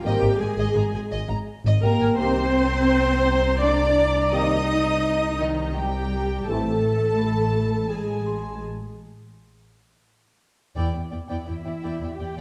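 This uneasy, mysterious cinematic cue in 3/4 at 84 BPM opens on a bed of strings and brass. An up-front viola section bows sul tasto with light vibrato, while cellos and a close double bass section carry the low end, and distant trombones and vintage-toned French horns hold sustained chords in the background. A delicate, bell-like celesta with soft felt hammers rings quietly behind them, and at 0.1 s two violin sections join: one plays a pure, floating melody and a richer one traces a second line. The harmony moves from G#add9 to Cm7 and then Am, and the horns and trombones fall away at 6.7 s. A break from 8.6 s suspends the harmony before an ensemble accent at 10.8 s lands on Em7. Moderate scoring-stage reverb and a dark, warm production give the soft-attack strings a shadowy glow in this excerpt from a longer piece.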